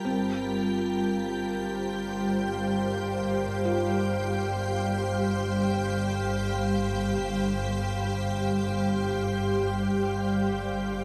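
A calm, organ-like pad with a slow attack, detuned unison and ensemble chorus holds a sustained Csus4/G chord up front while a dark, felt-muted upright piano with audible action noise and tape echo plays soft arpeggios in the background, joined at 0.1 seconds by a bowed, lush double bass section on a low G, in this spacious, melancholic free-time ambient excerpt tuned to A4 = 441 Hz and bathed in a huge reverb.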